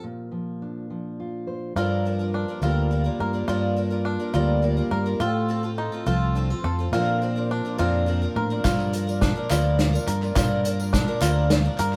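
Nostalgic and uplifting, this indie folk passage in 6/8 opens with a dark, full-bodied fingerpicked steel-string acoustic guitar, finger squeaks audible, before a bright, shimmering twelve-string acoustic guitar, a twangy bluegrass banjo playing arpeggios and a round, amped electric bass up front join at 1.8 seconds to begin a steady build-up over Bbadd9, Gm7 and F/A chords. At 8.6 seconds a natural country drum kit with a punchy kick and medium-tuned snare arrives up front with a fill, while crisp, compressed group handclaps and a jingly tambourine sit in the background. The band sounds as if playing live in one room with light reverb, and the passage is cut from a longer piece.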